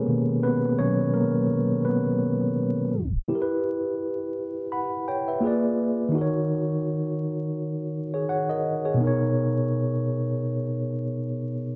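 Vinyl crackle and a wet studio ambience surround this dreamy, mellow hip hop excerpt at 84 BPM in B major with a swung 16th feel, where a clean tine electric piano, colored by cassette tape and heard up front as if through built-in speakers, carries the solo over Bmaj9, Em, A#7b9 and D#m7 before coming back to Bmaj9, with a tape stop from 2.9 to 3.3 seconds marking the move into the second section.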